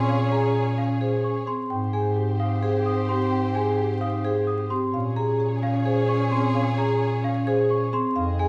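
A straight, even pulse in 7/8 drives this hypnotic, bright piece of minimalist pattern music, a short 8.5-second cut from a longer work. A woody marimba carries the melody from somewhere in the background, while a mellow, airy alto flute traces a low second line with a touch of vibrato from a distance. The vibraphone, metallic and ringing with a slow motor vibrato and a boxy small-room colour, spins arpeggios alongside a delicate, bell-like celesta that sits close-miked and dry high above. A lush, bowed string section holds soft-edged sustained chords underneath, moving from Bbm9 to Abmaj7 at 1.7 seconds and back to Bbm9 at 4.9 seconds. Up front, a roomy bass clarinet anchors the low end, and the whole sits in a moderate recital-hall reverb with a layer of vinyl crackle.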